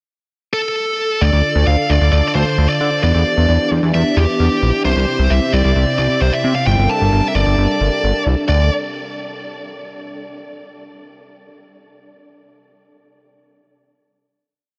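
A dark, high-gain electric lead guitar opens this short, complete synth-pop piece at 0.5 s, picking a motif-based melody through distortion and tape echo while it sits up front. At 1.2 s the verse begins as a glossy, retro sequenced synth bass enters, its pulse-wave and sawtooth tone shaped by a plucky filter, ring modulation and chorus, alongside a swirling, detuned analog pad that holds soft-attack chords colored by phaser and chorus. The mood is cool and driving at 132 BPM in a straight 4/4, moving through Dm, Em7, C and Gmadd9 in D minor. The whole mix is soaked in a huge ambient reverb that gives it a dreamy, wet sheen. From 8.5 s the piece settles onto a final note that rings out in that long reverb tail.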